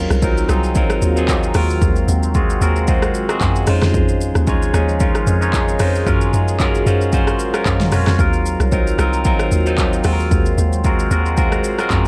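A dry amapiano excerpt with a hypnotic, soulful sway, where a bright, barky electric piano with phaser sits up front over Ebm69-to-Gbmaj9 harmony, a hollow, bouncy log drum bass, a punchy overdriven deep house kit with fat snare, metallic hats, claps, shaker, rim clicks and toms, and a deep, moody, detuned pad that pumps with chorus and reverb in the background.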